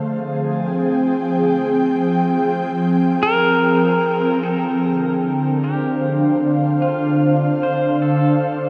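Ambient in D minor at 75 BPM in 3/4, this spacious, melancholic excerpt has a dark, warm production bathed in a huge reverb tail of 7.3 seconds. An ethereal, airy pad sustains chords from the start, moving from Fmadd9 to Dm7 at 4.4 seconds with ensemble chorus and shimmer reverb, while a clean electric pedal steel guitar enters at 3.2 seconds, playing a fingerpicked slide melody with volume swells, shimmer reverb and delay, and fades in from 4.4 seconds. Between 4.4 and 6.2 seconds a soft, round, wave-folded pluck adds barely audible arpeggios.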